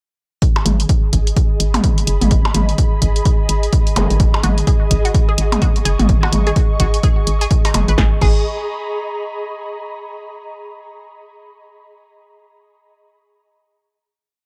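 A dry, close, echo-heavy mix gives this short, complete minimal techno piece in G# minor a sparse, hypnotic feel, moving at 127 BPM in 4/4 with a 16th-note swing. A punchy analog kick drives a four-on-the-floor pulse up front, while a drum machine adds closed hats, a backbeat snare and a crash. Electronic clicks, woodblock-like blips and mid toms run in cross rhythm, their dub echo set in a large-room sound. A hollow, bouncy FM bass plays off-beat notes low in the register, ducking with sidechain pumping beneath an ethereal, warbling vintage pad that drifts through slowly shifting chords with ensemble chorus and reverb. A brief background zap at 4.0 s leads into a squelchy, resonant sawtooth pluck at 4.4 s, whose phased, delayed five-step loop drifts against the bar before the groove gives way to a final chord from 8.0 s.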